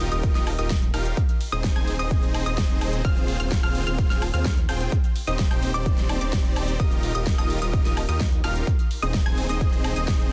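A punchy electronic kick sits up front at 128 BPM in straight 4/4, entering at 0.2 s and driving this triumphant, euphoric festival progressive house excerpt in Eb major. Underneath, a thick detuned saw bass with chorus and sidechain pumping holds down the low end, while huge, lush supersaw chords carry the riff through a progression that moves from Ebadd9 to Ab/Eb, Fm/Eb and Cm/Eb over a held Eb. High above, a mellow unison pluck spins arpeggios with a vintage 12-bit sampler grit, a moving notch and digital delay, pumping against the kick just like the chords. The big-room dance drum kit adds a huge snare, metallic hi-hats, shaker and woodblock, its layered sound re-recorded in a small room. A barely audible electronic impact marks the opening second, lasting until 1.2 s, and the whole excerpt sits in digital ambience with a dense, heavily limited modern master.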